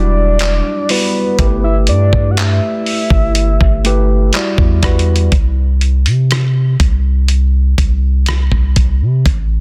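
Moody and sensual, this slow contemporary R&B excerpt sits at 61 BPM in E minor with a straight 4/4 feel. A round, full-bodied synth lead layered with a sub octave carries the melody through chorus, phaser and tape echo until 4.3 seconds. Beneath it, a worn, slightly out-of-tune electric piano, lightly overdriven as if through built-in speakers, voices Em9 and G69 chords before falling silent at 5.3 seconds. A faint FM bell adds a gentle, warbling shimmer near the start. The gritty, sampler-style drum kit, with a thumpy kick, hi-hat, rim click, handclaps and a softly clipped snare, runs alongside a deep, dark 808-style bass whose long notes sit up front. Once the chords drop away, drums and bass carry the second half alone in a dense, heavily limited mix bathed in digital ambience.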